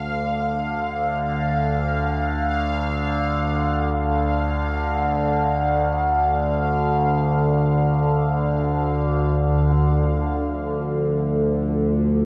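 Ambient in free time, dark and cavernous, this excerpt from a longer piece is built on an up-front drone of sawtooth and sine with moving, resonant overtones, treated with chorus and phaser and fading in across the first 9.7 seconds. Above it, a bright, bubbling texture of detuned sawtooth with random filter steps and shimmer reverb sits high until 9.8 seconds, just after a very quiet, vintage-sounding pad with a filter swell enters at 9.7 seconds with sustained chords. A huge reverb with an 8.4-second decay and the worn, warbly pitch drift of old cassette tape colour the whole recording.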